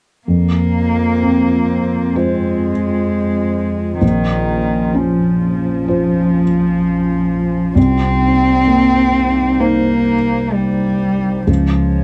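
A felt-muted upright piano and a dark cello enter together at 0.3 seconds in this fragile, longing fragment of neoclassical piano and strings, set in F minor at a slow, rubato 64 BPM in 4/4. The piano carries the accompaniment with a soft, boxy, intimate tone, its thick felt dulling every note as it sits up front. A single bowed cello plays the second line, its woody sound marked by vibrato, close in level yet carrying a distant quality. From 0.7 seconds a warbling, tape-like pad of square and triangle tones holds sustained chords beneath them, nostalgic and lo-fi with a slow attack, long release, chorus and its own reverb. The harmony moves from Fm through Bbmadd9 and Cm7 to Db, all within a dry, close 1970s-style studio sound with light reverb, and the passage breaks off at 12.0 seconds as though cut from a longer piece.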